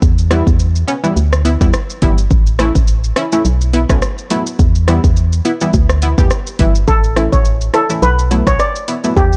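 A hollow, organ-like FM bass and an electronic afro-pop kit open this bouncy, tough dancehall excerpt together, the kit's deep kick, metallic hats, rim click and shaker roughened by vintage 12-bit sampler grit. A punchy sawtooth chord stab with chorus joins at 0.3 seconds, cycling through Em, A and B7sus4. At 6.9 seconds a shimmering, mellow steel pan struck with soft rubber sticks takes the melody, all set up front in a dark, dry mix.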